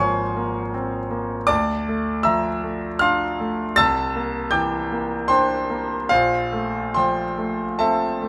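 Impressionist classical solo piano in a hazy, dreamy mood, this brief excerpt cut from a longer piece drifts in a rubato triple metre, as a clear, intimate concert grand with deep bass, polished tone and audible action noise sits up front in light reverb, spanning Ab1 to A6 through chords such as Bbm9/Ab, Dmadd9, C9 and Bbsus2.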